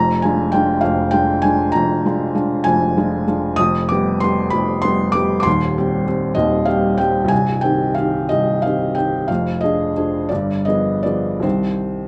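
A felt-muted upright piano sits up front, its mellow, intimate tone softened by thin felt, with audible action noise and a vintage character. It plays a wistful, yearning romantic nocturne in 12/8 with free rubato, circling through diminished and dominant chords that settle back onto the home minor chord at 7.3 and 11.4 seconds. Light reverb and a rolled-off top end give the piano a hushed sound, and the passage is cut from a longer piece.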